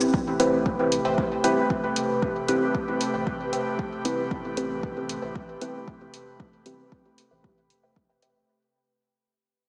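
A dreamy, reverb-soaked mix with a small-speaker sound and a lush hall ambience frames this hypnotic, deep dub techno excerpt in A minor at 115 BPM, resting on a single Am9 chord as it fades out across its 8.5 seconds. Up front, a mellow, nasal chord stab with chorus, phaser, cassette tape colour, dub echo and a filter sweep pumps against an overdriven electronic kick, while an airy, breathy pad sustains alongside them and a soft, round dub sub bass sits in the background. Overdriven electronic shaker and hi-hat trail dub echoes, and from 1.1 seconds a crisp, detuned wavetable stab riff adds bright, wave-folded plucks with a moving notch.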